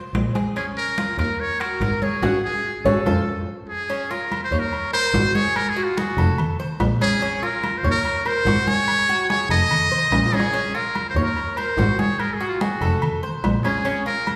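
Latin music in the Cuban son and guajira style, nostalgic yet danceable, built on a Cuban tres picking metallic arpeggios on its double strings while a dark, bowed double bass holds the low end with smooth vibrato. Congas with a thick, vintage skin tone play alongside ringing metal-shell timbales and agogo bells that stay close and dry in the background, and a buzzy, brilliant trumpet with a metal mute carries the solo melody up front, breathy and jazz-inflected. The band hits a shared accent between 2.2 and 3.9 seconds, a drum fill arrives at 10.1 seconds, and the ensemble sounds in a reverberant recital hall.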